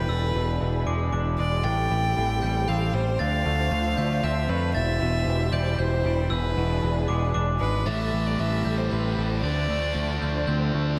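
Post-rock in 3/4 at 116 BPM, this cinematic, hopeful excerpt sets a clear, biting solo violin melody, bowed airily with vibrato, over a lush, dark symphonic string section in the background, while a bell-like glockenspiel struck with brass mallets and a twangy clean electric guitar with analog chorus both play arpeggios through diffuse ambient delay. A growling, punchy overdriven electric bass sits up front underneath the chords moving from E7 through Am7, Dm7 and Cmaj7/E, and at 7.9 seconds a thick fuzz guitar enters with a bright distorted riff. The dreamy mix is soaked in plate reverb.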